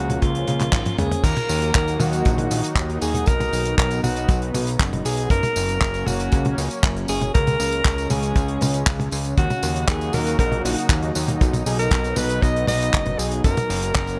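A bright alto saxophone carries a pop-style solo melody with vibrato and a delay trail in this melodramatic, nostalgic italo disco excerpt in Eb minor at 118 BPM. Underneath, a lush, detuned unison pad holds sustained sawtooth chords with a slow attack and chorus, while a fat, saturated analog bass with a filter pluck anchors the low end through a Db, Ebm, B and Gb progression. A dry, damped 70s acoustic kit with dark cymbals, handclaps, tambourine, hi-hat and toms sits up front beside a tight kick with a rolled-off top, marking a drum fill from 0.5 to 1.2 s and a band accent at 0.7 s before the main section settles in at 1.2 s within a small room ambience.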